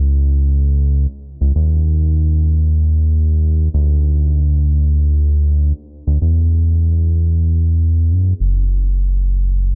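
A round, detuned analog bass plays alone and up front for the full 9.8 seconds of this wistful, playful IDM passage in free time, its dark, sustained tone sitting low between Gb1 and F#2 with a fast attack and a subtle chorus, in a dry setting with little reverb, cut from a longer piece.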